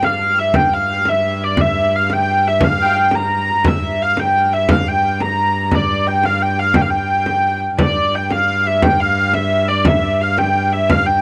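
A dry, close studio sound with a moderate booth ambience frames this driving, mysterious medieval dance in 6/8 at 116 BPM in G dorian, where a nasal, reedy hurdy-gurdy with tape echo carries the melody up front, a pure, floating viola da gamba holds a ringing drone on G2 beneath it, and a frame drum struck with hard hands keeps the pulse, all three playing from start to finish of this 11-second cut from a longer piece.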